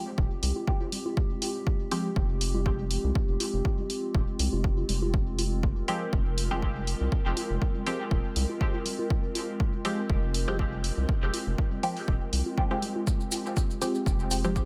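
Lightly swung 16ths in 4/4 drive this deep, nocturnal dub techno excerpt, where a dry, punchy electronic kick sits up front beside a round, dark, sidechain-pumped analog bass, while a dry analog hi-hat carries studio reverb and background congas carry studio reverb and dub echo, a warbling, nostalgic lo-fi pad holds a sustained Fmadd9 chord through chorus, muted sawtooth chord stabs with phaser, 12-bit sampler grit and dub echo drop out briefly before returning at 5.9 s, grainy acoustic maracas join at 13.1 s, and a mellow, higher stab riff surfaces in the background at 13.8 s.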